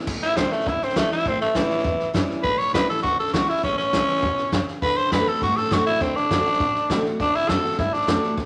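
A rollicking, upbeat rockabilly groove at 202 BPM in straight 4/4 drives this short cut from a longer piece in A mixolydian, where an edgy, gritty tenor saxophone takes an up-front solo with vibrato over a punchy-kicked, fat-snared vintage drum kit with crash and hi-hat, a bright picked dreadnought acoustic guitar and a woody, thumpy pizzicato upright bass sitting in the background, all moving from A7 to D7 at 4.8 seconds in a moderate large studio reverb.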